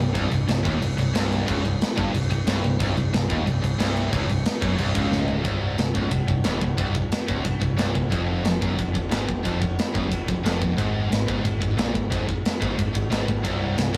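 Heavy metal with a relentless, dark mood, this excerpt from a longer piece is built on two distorted, high-gain electric guitars playing low riffs, one sitting in the background, alongside a very quiet, overdriven, double-tracked stack guitar riff that drops out at 5.4 seconds. A picked electric bass with a direct, bright tone anchors the low end, while a tight acoustic drum kit comes in at 0.2 seconds, up front in a big room with a tight kick, medium-tuned snare, ride, toms and crashing cymbals, and plays a fill at 5.1 seconds that leads into a new section. The whole thing has the rough feel of a rehearsal-room recording with light reverb, moving from C minor to F minor and an A-flat chord before the harmony falls away at the end.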